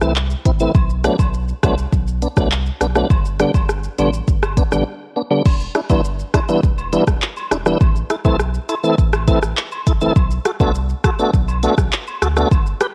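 A tough, sultry dancehall groove opens with a full, clean tonewheel organ up front, colored by chorus vibrato, key click and a fast rotary speaker, over a round, sine-like sub bass and a produced electronic drum kit with a deep kick, crisp hats, rim clicks, handclaps, shaker, crash and a cassette-tape character; distant woodblock and cabasa join at 0.8 seconds, and a brief break at 4.9 seconds gives way to a new section at 5.5 seconds, with little reverb on this home cassette recording.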